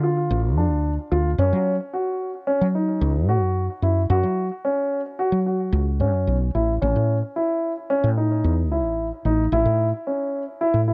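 Worn, warbling cassette tape with its drifting pitch and a light reverb colours this short, tense and driving excerpt of progressive instrumental band music in an uneven 5/4. A grand piano spins arpeggios touched with delay, while a woody, growly fretless electric bass sits up front and holds down the bass line for the full 10.9 seconds. The harmony moves from Dm to F#5 and then to A.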